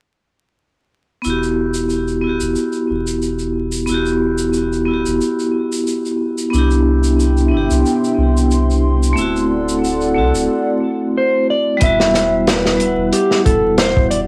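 A steady 4/4 pulse at 91 BPM, with a light 16th-note swing, carries this melancholic, dark trip hop passage in E minor, cut from a longer piece. From 1.2 seconds a bright, ringing vibraphone played with hard mallets states the chords (Emadd9, Cmaj7, D7) through harmonic tremolo, a low-pass filter, cassette tape colour and tape echo. Beneath it sit a soft, round dub sub bass and a faint, vintage tube shaker. At 7.2 seconds a moody, detuned analog pad with chorus adds sustained chords for a few seconds. Near the close a clean electric lap steel guitar takes the melody with slide and tape echo, while from 11.8 seconds a gritty, saturated breakbeat kit of kick, snare and hi-hat comes in up front and a filter sweep moves across the vibraphone. The whole has the feel of a home cassette recording, with vinyl crackle and a light reverb.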